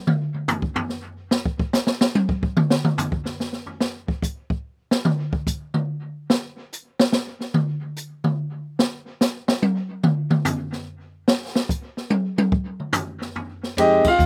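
Cool and smoky, this jazz piano trio excerpt in F minor moves at 145 BPM in a swung 3/4. The open jazz drum kit carries nearly all of it, taking a solo from the start until 13.8 seconds across crash and ride cymbals, hi-hat, kick, snare and toms. The kit sounds natural and up front, with dark cymbals, a medium-tuned snare and a boomy kick. At 13.8 seconds the concert grand piano and upright bass join for a brief band accent at 14.0 seconds, the piano's deep bass and long sustain standing forward in the balance while the pizzicato bass adds woody low notes. The sound is dry, recorded outdoors with little reverb and scarcely any room sound, and the fragment ends at 14.3 seconds as it is cut from a longer piece.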